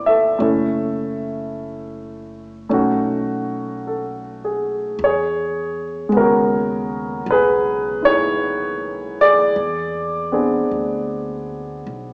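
An up-front, natural-sounding baby grand piano carries the accompaniment in this late-night, intimate jazz ballad at a slow 52 BPM with a swung 4/4 feel, while a woody pizzicato upright bass sits low and quiet beneath it through chords moving from F#m7 to B9, E6 and E7b13, all bathed in a lush large-studio reverb and heard through a small-speaker sound in this excerpt from a longer piece.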